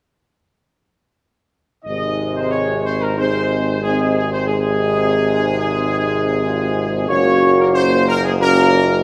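A wet scoring-stage reverb gives this regal, triumphant classical brass passage, cut from a longer piece, a spacious, roomy sound at a stately 92 BPM in Ab mixolydian. The clear trumpet section, up front with light vibrato, carries the melody from 1.8 seconds, joined a moment later by sustained chords from the mellow, soft-attack French horns and the tight, vintage-toned trombones in the background. Beneath them, a distant, roomy solo tuba anchors the bass as the harmony shifts from Ab to Gb at 7.1 seconds.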